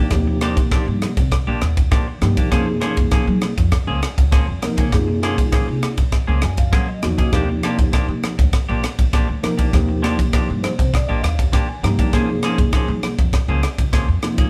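A mellow, clean tine electric piano, bright picked stabs from a semi-hollow electric guitar and a woody pizzicato upright bass open this soaring, bright excerpt of electric jazz fusion at 100 BPM in Eb major, joined at 0.1 seconds by a crisp, up-front drum kit with punchy kick, ride cymbal and rim click, as the band moves between Ebmaj9 and Gbmaj9 in a moderately reverberant room, the electric piano adding fills at 6.1 and 10.3 seconds.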